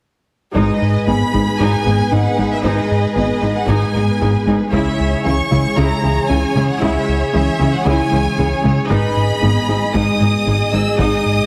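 A round analog bass stands out most, its deep, dark sawtooth-and-sine tone, colored by ring modulation, driving a riff from 0.6 s in this brooding, tense excerpt of a hybrid orchestral and electronic film score in G# minor at 115 BPM. Above it, a lush symphonic violin section carries the melody with focused vibrato, while a soft-attacked studio violin section adds an expressive second line and a smooth, even viola section fills in the accompaniment. A distant cello section and a very quiet double bass section anchor the low end, and a mellow, harp-like synth pluck with chorus rings out arpeggios in the background. A taiko ensemble strikes with heavy sticks, close and dry, in bursts that return at 4.7 s and 8.9 s, as the harmony moves from G#m to C#m and back. A faint baby grand piano adds natural texture from 1.1 s, all set in a wet scoring-stage reverb and squeezed into a heavily compressed, radio-like sound.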